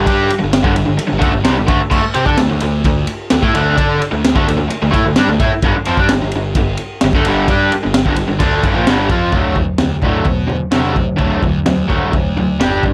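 A bright, overdriven garage guitar, double-tracked and up front, drives this rowdy, raw garage rock excerpt at 130 BPM in D mixolydian, cycling through G5 and D5 power chords before settling on D when the second section arrives at 9.3 seconds. Underneath, a fuzzed, picked electric bass adds a warm, overdriven low end, while a crunchy breakbeat kit in a small room brings a punchy kick, a high-tuned snare, dark cymbals and toms with a gritty, saturated, rolled-off top. A light reverb gives the straight 4/4 groove a touch of space.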